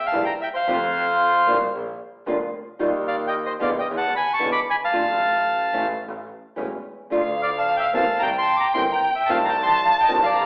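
Rubato in 4/4 at 112 BPM, this tense, dramatic D minor tango excerpt sets a reedy, vintage bandoneon melody up front over dark, thumb-plucked classical nylon-string guitar and a biting, bowed double bass with light vibrato, and at 7.1 seconds a close, expressive violin joins with a second line full of vibrato and portamento, all heard through a church-like hall reverb and a thin telephone-style sound.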